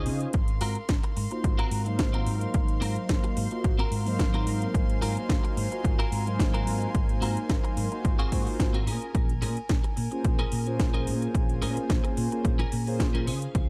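This feel-good, groovy nu-disco excerpt opens with a mellow, brassy synth part built from detuned sawtooth tones, carrying chorus, vibrato, tape echo and a filter sweep, alongside a rich chamber string section holding bowed chords with light vibrato and a smooth top. A clean, picked electric guitar plays a compressed riff through ensemble chorus and tape echo, while a round, hollow-body short-scale electric bass anchors the low end with an amped, fingered tone. The house drum kit arrives at 0.1 seconds with a cracking snare and metallic hi-hats, and a punchy, overdriven electronic kick follows at 0.3 seconds, sitting up front. Sidechain pumping makes the synth brass and strings breathe around the kick, and the harmony rests on Ab13 before moving to Bbm7 at 8.9 seconds. The production is dark and dry, with little reverb, giving the swung groove a close, intimate feel.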